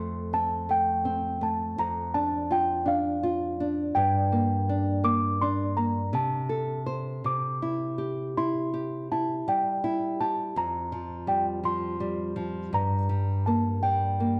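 In a 6/8 at 55 beats per minute, counted in dotted quarters and played with a free, rubato feel, this tender children's lullaby in F major drifts along at a sleepy pace. A celesta carries the melody between F5 and D6, its bell-like tone made sweet and mellow by soft felt hammers. Beneath it, a small, up-front nylon-string guitar is fingerpicked in accompaniment from F2 up to C5, sounding warm and acoustic. The harmony moves from Fadd9 through Gm, Am/C and C before settling on Fsus2 at 10.6 seconds and returning to Gm at 12.7 seconds. Both instruments play together throughout the 14.4-second section, set in a moderate recital-hall reverb within a dark, warm production. The passage is cut from a longer piece.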